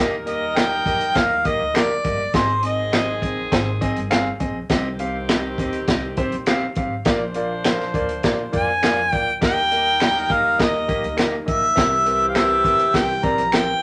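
A straight 4/4 pulse at 102 BPM drives this uptempo, 1960s-style soul excerpt in Eb major. The crunchy breakbeat kit of kick, snare and hi-hat sits up front, saturated and gritty, with a tight kick, a medium-tuned snare and a dark, rolled-off top. Vintage, band-limited finger snaps join in the background from 0.6 s. Underneath, a woody pizzicato upright bass and an intimate concert grand piano, polished and present with audible action noise and long sustain, carry the Eb, Ab, Cm, Bb and C7 changes, while a distant, roomy horn section plays a tight second line. An up-front, mellow harmonica sings the jazz-style melody at the start with light vibrato, soft attacks and scooped notes, then returns at 8.5 s. A very quiet, fat tonewheel organ with third-harmonic percussion and a slow rotary speaker adds sustained chords from 9.4 s, and a moderate club reverb rounds out the uplifting, joyful mood.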